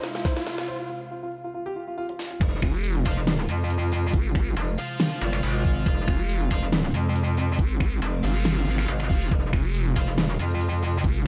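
A half-time 4/4 groove at 139 BPM with a slight swing on the sixteenths drives this aggressive, chaotic heavy wobble dubstep excerpt in F minor, opening on a build-up where a clear baby grand piano melody with digital delay, an electronic riser, drum fills and a filter sweep on an evolving, detuned wavetable pad set the stage before a break. The drop lands at 2.4 seconds, as a metallic, distorted wobble bass pushes up front, joined moments later by a nasal, formant-filtered vowel-sweep wobble bass, over a knocking, overdriven electronic kick and a dubstep kit with a huge snare and bright hats, both re-recorded in a small room. Picked stabs from an overdriven electric guitar with digital delay appear while the phased, chorused pad pumps in the background, all within a dark production carrying light reverb.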